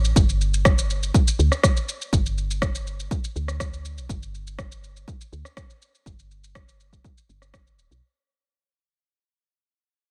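A straight 4/4 afro house groove at 122 BPM drives this earthy snippet, with a punchy, layered electronic kick, overdriven and up front, joining at 0.2 s over an up-front electronic shaker and rim click. Alongside them a woody, round FM bass with a fast attack and dark, decaying tone pumps under sidechain compression between D1 and D2, tuned to A4 = 438 Hz. The dry mix carries little reverb, and the whole fragment fades out across its 8 seconds, cut from a longer piece.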